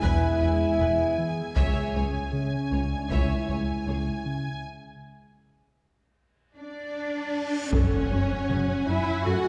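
This cinematic hybrid orchestral and electronic film score moves at a brooding, relentless 78 BPM in a straight 4/4, heard as a section cut from a longer piece and set in a wet scoring-stage reverb that places the ensemble further back in the room. A distant, lush violin section carries the melody around G#5, with a second violin line in the background and a viola section filling in the accompaniment with smooth, even bowing. French horns hold vintage-toned chords, while a mellow analog pad with chorus and a slow attack sustains harmony underneath, moving from E to C#m before a break at 4.6 s. The low end is built from a dark synth bass riff with a moving notch, an up-front, expressive cello section and a very quiet bowed double bass section, all driven by a taiko ensemble played with hard sticks in a live room. A drum fill from 6.6 s and a reverse cymbal at 7.3 s lead into a huge impact at 7.7 s, where the music lands on an F#madd9 chord.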